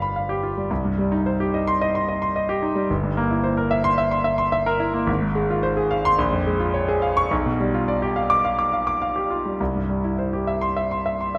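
A concert grand piano carries this stormy, passionate classical study on its own, its tone clear and worn, with a deep bass and a natural, up-front presence. The solo part spans from G1 up to D6 across the 11.4 seconds of this short cut from a longer virtuoso piece. The pulse sits around 108 BPM in 4/4, but the rubato feel lets the time stretch and pull with the drama of the music. The harmony moves from G7 into Cm, passes through C7/G, Fm/Ab, Bbm7 and G7/B, and arrives on C at 9.6 seconds. A moderate concert hall reverb surrounds the instrument, giving the performance a sense of space around its close, clear sound.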